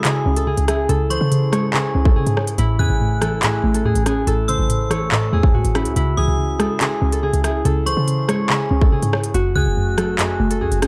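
A half-time drill groove at 142 BPM drives this cold, tense hip hop excerpt in C# minor, with an up-front electronic kit of hard-clipped kick, crisp hi-hats, handclaps and rim clicks, joined at 0.3 seconds by a punchy, tight 808-style bass. Over it, a bright, fingerpicked Celtic harp carries the melody through a low-pass filter, while a warbling, lo-fi dusty pluck with a sub octave and filter sweep supplies the accompaniment. A metallic, inharmonic FM bell rings out a high second line through chorus and tape echo, and a hollow, flute-like pad holds mellow chords in the background as the harmony moves from C#m to A, back to C#m and on to F#m, all in a dark production with little reverb.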